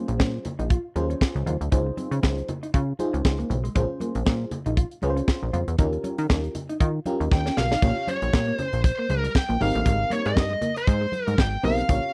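A swung sixteenth-note groove at 118 BPM drives this late-night, danceable early-eighties boogie funk cut in Bb dorian, where a tight, up-front drum kit with a high-tuned snare and a punchy, plucky analog bass with ring-modulated bite sit under a mellow FM electric piano with tremolo and phaser, a slightly broken-up guitar riff through a small old amp in the background and very quiet ringing congas, until a drum fill at 7.3 seconds brings in a dark, high-gain lead guitar melody with distortion and slapback echo over the chords moving to Bbm6 and Abmaj9, all in a dry, close small-room sound.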